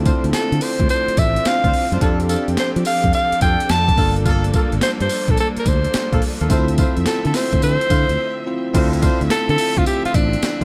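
Bell-like tine electric piano, lush bowed studio strings in the background and a dark, round fingered bass open this confident, slick new jack swing excerpt in D minor at 107 BPM with a swung sixteenth feel, joined at once by jazzy horn stabs with delay, a gritty, overdriven boom bap sampler-style kit with a thumpy kick and high-tuned snare, and an up-front bright alto saxophone melody full of scooped notes, moving through Dm7, F6, Gm9 and Dm9 before a brief break at 8.2 seconds.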